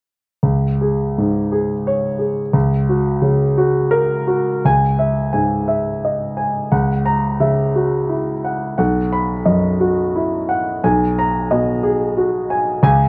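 A loose, rubato 6/8 sway carries this intimate, hopeful fragment of neoclassical minimalist piano, where a lone concert grand, clear and up front with deep bass and short sustain, plays from 0.4 to 13.1 seconds through chords moving from F#/C# and C#m to B and G#madd9/B, all heard through light reverb and the worn, warbling pitch drift of old cassette tape.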